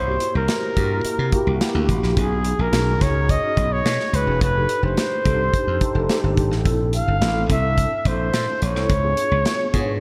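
A straight 4/4 groove at 107 BPM drives this polished 1980s jazz-funk pop excerpt, slick and bittersweet in mood, with chords moving from C7#11 through B69, F13 and A#maj9#11 to C#7b9. A punchy, bright slap bass sits up front from the first second, running between E1 and C3, while a modern studio drum kit enters at 0.2 seconds with hi-hat, a tight kick and a medium-tuned snare, its tone dark and smooth with a rolled-off top. A mellow tine electric piano comps underneath through its built-in speakers, clean and thickened by ensemble chorus. Over this, a breathy flugelhorn carries the melody between G#4 and E#5, intimate and whispered, with soft attacks, scooped notes, vibrato and a trail of tape echo. A moderate plate reverb soaks the mix in a dreamy haze.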